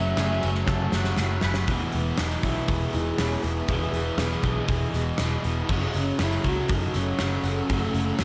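A round, foam-muted picked bass, a dark fuzz guitar riff, a double-tracked overdriven guitar riff, a barely audible direct clean guitar riff, twangy guitar arpeggios that stop at 1.7 seconds, a mellow horn-like synth lead with vibrato and a cloudy granular pad holding sustained chords open this blissful, dreamy shoegaze and dream pop rock passage. At 0.2 seconds they are joined by a gated 80s drum kit with a punchy kick and bright cymbals, up front and playing a fill from 0.7 to 1.7 seconds, along with a very quiet jingly tambourine. All of this sits in light small-room ambience as the harmony moves from F#m7 to Emaj7 and back.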